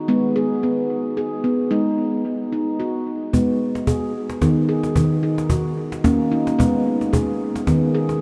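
Set in a 3/4 with a gentle swing on the sixteenths, this meditative world excerpt opens with a handpan playing ringing arpeggios, its nitrided-steel tone warm under the fingertips, vintage and band-limited, sitting up front with an analog delay trailing each note. At 3.3 seconds a snappy acoustic cajon with snares joins, played with soft hands and carrying a small-room character, as the hypnotic harmony moves from G# minor to D# minor and back. The whole mix is dreamy and soaked in a huge ambient reverb with a long, wet decay.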